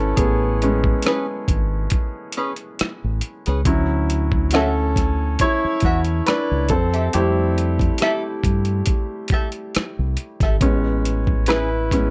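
A clear grand piano carries the solo throughout this smooth, relaxed neo-soul and R&B excerpt at 69 BPM in A major, its plate reverb glowing over a progression of Amaj9, Dmaj9 and Fmaj9 chords. Beneath it, a round, dark fingered electric bass and a gritty, overdriven boom bap sampler-style kit of thumpy kick, hi-hat and rim click set a lightly swung groove. From 1.1 to 11.7 seconds a hollow-body archtop guitar adds a clean, picked second line through wah and plate reverb, all within a dark, warm production.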